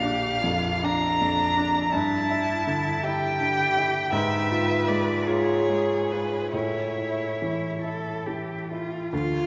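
Bathed in the long, wet reverb of a church or concert hall, this brief fragment of a slow romantic piano-trio movement in a rubato 6/8 unfolds with elegiac melancholy, as a focused, up-front violin sings the melody with vibrato, a rich, expressive cello carries a second line with soft attacks and portamento, and a clear, intimate grand piano supplies long-sustained accompaniment with its action noise audible.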